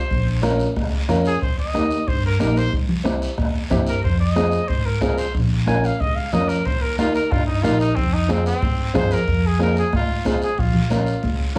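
A distant, roomy trumpet carries the melody in this driving, passionate cumbia fragment, soloing with vibrato and a punchy, pop-style edge from the opening until 9.3 seconds. Beneath it, a pizzicato upright bass with steel strings gives a growly, woody low end. A dark, mellow upright piano, slightly detuned and long in sustain, fills in the accompaniment from 0.4 seconds. The percussion sits in layers: a soft-beater bombo and a raspy guiro sound far off in a large room, while high-tuned congas struck with hard hands add a bright, thin-skinned snap in the background. The harmony moves through Bbm, Eb, C and Fm, and a new section begins at 9.3 seconds before the piece is cut off, with light reverb lending a small-room ambience.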